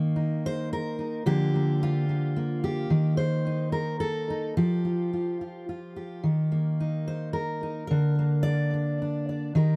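Folk piece for solo fingerpicked steel-string acoustic guitar, reflective and melancholic, moving at 109 BPM in a straight 3/4 across this brief excerpt cut from a longer piece. The jumbo guitar sounds bright and full-bodied, sitting up front with a touch of tape echo as it ranges from D3 to D5 through chords such as Eb5, Bb/D, Cm7/Eb and Fsus2. The close, dry 1970s-style studio sound carries only light reverb.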